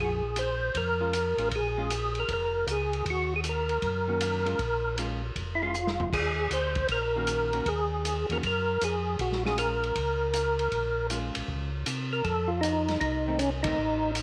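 A moderate spring reverb wraps this smoky, bluesy soul jazz organ trio excerpt in Bb minor at 157 BPM with a swung 4/4 feel, where a fat, percussive tonewheel organ with key click, chorus vibrato, slapback echo and a slow rotary speaker carries the melody up front, a round, dark tonewheel organ with transformer saturation holds down the bass, a muffled, lo-fi drum kit with a tight kick enters at 0.4 seconds and plays a fill near 5.7 seconds, and a clean hollow-body jazz guitar adds fingered accompaniment over Bbm7, Ebm7 and F7 changes before a band accent at 13.6 seconds.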